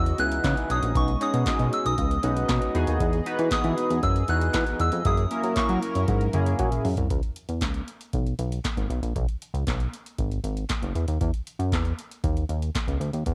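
Early-eighties boogie funk at 117 BPM in C# dorian, slick and late-night, this cassette home recording cut from a longer piece sets a soft, pure FM bell melody and a shimmering pulse-width pad in the background over a glossy, nasal chorused synth bass and a booming analog drum machine with deep kick, crisp snare, metallic hats, handclaps and toms, while a mellow chorused polysynth comps through C#m11, B69, Emaj7 and F#7 before a drum fill at 6.1 seconds leads to a sparser stretch where bass and drums carry on alone until 13.3 seconds.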